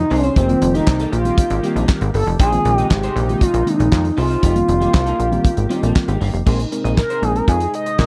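Early-eighties boogie funk at a funky, danceable groove, this dry, close excerpt sets a nasal, expressive synth lead with chorus and slapback echo up front over a punchy, plucky analog bass, a damped 70s kit with fat snare, handclaps and dark cymbals, a mellow tine electric piano entering at 0.5 seconds, a slightly broken-up, picked guitar riff and a shimmering pulse-width pad moving between F9sus4 and Bb9sus4, before the lead takes a solo at 6.5 seconds.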